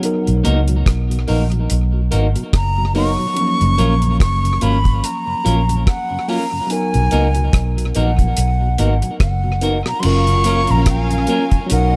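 Lovers rock reggae in a tender, romantic vein, built on a dry, tight-kicked drum kit and a dark, round, foam-muted electric bass sitting up front, with a worn, slightly out-of-tune tine electric piano, a clean picked electric guitar playing stabs and a soft tonewheel organ turning through a slow rotary speaker in the background. A breathy jazz flute with vibrato and lifted highs carries the melody from 2.6 seconds, and a lush, woody string section adds a second line at 10.0 seconds as the harmony moves from Bmaj7 to F#maj7. Tape echo colours the piano, drums, guitar, flute and strings, and the whole band sits inside a small room's reverb.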